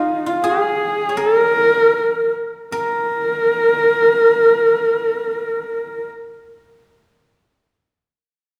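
In a straight 4/4 at 72-87 BPM, slowing down over the first 2.7 seconds before a new section begins, this short cut from a longer piece of Mongolian folk music in Bb yu mode, tuned to A4 = 442 Hz, feels vast and windswept. A single dark, husky horsehead fiddle carries the melody up front, its bowed horsehair strings nasal, woody and boxy, with vibrato and portamento. A fingerpicked guzheng plays a quieter second line with a silvery, ringing tone, and both sit in a recital hall reverb with a 1.6-second decay.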